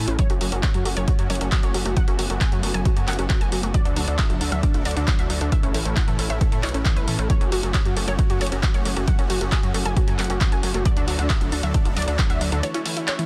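A bright, detuned unison pluck carries the lead melody from the very start, dressed in analog chorus and dub echo, while a gritty, saturated synth bass drives underneath it up front. This uplifting trance excerpt moves at 135 BPM in a straight 4/4, in F# minor, with a bittersweet yet driving mood as the harmony cycles through F#m, D and A. A second pluck, short and set in the background, spins arpeggios with its own dub echo, and a filter sweep on that arpeggio sound runs through the whole passage. A lush, airy supersaw pad holds sustained chords behind them, and the pad, bass and both plucks all pump against the sidechain. A punchy analog kick sits prominently at the front, joined by drum-machine handclaps and hi-hat. The mix is dense and heavily limited with little reverb, and the bass drops out at 12.6 seconds for a brief break before the cut.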